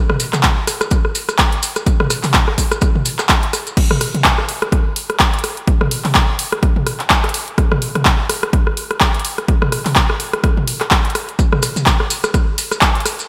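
An overdriven, punchy electronic kick drives this hypnotic, gritty house excerpt in a swung 4/4 alongside a dry analog drum machine of handclaps, hi-hat, ride, crash, rim clicks and toms with gated reverb, while grainy, mellow maracas appear from 0.2 to 3.8 seconds and return at 11.4 seconds, all set in a bright 1980s-style digital production with light reverb.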